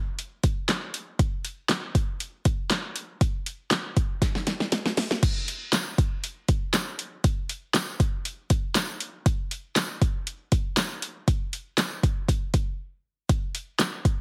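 An up-front electronic deep house drum kit opens this energetic, confident pop groove in straight 4/4, its deep kick, fat snare, handclaps, crash cymbal and metallic hi-hats layered with a tape-warm character, and a drum fill at 4.2 seconds leads into a new section. A jingly acoustic tambourine joins in the background at 5.7 seconds, carrying a small-room sound, before a brief break at 12.8 seconds. The dry mix has a heavily compressed radio sound, and the clip is cut from a longer piece.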